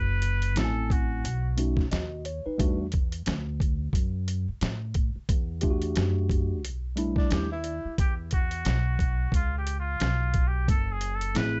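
A muted trumpet and a woody, dark upright bass open this mellow, cool jazz-hop excerpt at 89 BPM in E dorian, with the trumpet's nasal, breathy tone sounding distant and roomy over a swung sixteenth-note feel in 4/4. A compressed, pitched-down sampler-style drum kit enters at 0.2 seconds, its thumpy kick, medium-tuned snare and hi-hat sitting muffled and tape-warm up front, and a clean tine electric piano joins at 0.6 seconds through its built-in speakers. The chords move from F#m7b5 through B7 to a lingering Em11, with the pizzicato bass and electric piano carrying the harmony after the trumpet's brief opening phrase. At 7.2 seconds a whispered, subtoned tenor saxophone slips in with scooped notes and vibrato, its soft attack trailed by analog delay. The muted trumpet returns at 8.0 seconds for a solo with light vibrato and scooped notes over Esus2, G7#11 and F#m7b5. A light reverb and a dulled top end keep the whole mix mellow and cool.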